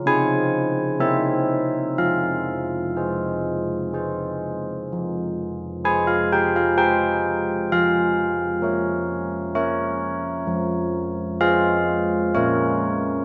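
Classical church-bell music in a slow, solemn three-beat metre, this wintry fragment is cut from a longer piece and played by a solo carillon. The bronze bells sit up front, mellow and soft from a padded clapper, with a ringing minor-third overtone. Their tone carries into a moderate concert-hall reverb with a dark, rolled-off top, and the opening phrase returns at 4.9 seconds.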